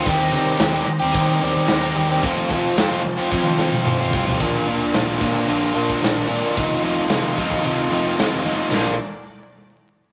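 Carefree and jangly, this short indie rock excerpt moves at 111 BPM in a straight 4/4, set in Bb major. An overdriven, double-tracked electric guitar sits up front with a bright, compressed riff, while a fuzz-driven picked bass adds a punchy low end beneath it. A big acoustic rock kit fills the space with bright cymbals, a punchy kick, a medium-tuned snare and toms, capped by a drum fill from 3.3 to 4.4 seconds. Very quietly in the background, a vintage string machine set to violins holds shimmering, slow-attack sawtooth chords with an ensemble chorus, and a jingly tambourine joins only from 0.6 to 4.0 seconds. The harmony passes from Cm7/Eb and F to Bbmaj7 and F7, all framed by a small-room ambience and a layer of vinyl crackle.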